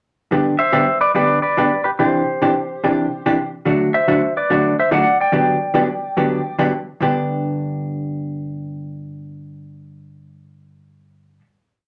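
A bright, twangy lap steel carries this short, playful country piece, sliding through short motif-based call phrases with volume swells, partly doubled in thirds, from 0.6 to 6.6 seconds. Beneath it, a dark hollow-body jazz guitar picks a four-to-the-bar rhythm over a swinging feel, moving from G through Cadd9, D and Gmaj7 before settling on a held final G chord at 7.0 seconds. Both guitars sit up front with a compressed, clean tone, wrapped in a wet small-room reverb that gives the cheerful tune an intimate, lively sound.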